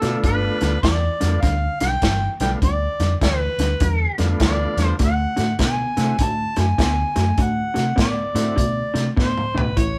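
A lightly reverberant live-room sound frames this rollicking, soulful electric blues shuffle at 101 BPM, where an overdriven, mellow harmonica with scooped notes and tongue slaps carries the melody over a smooth tonewheel organ with key click and slow rotary speaker that stops at 8.6 seconds, a dark, slightly broken-up guitar riff through a small old amp, a round, punchy foam-muted bass, and an up-front soul drum kit with a tight kick that plays a fill at 9.2 seconds, moving from G9 to D9.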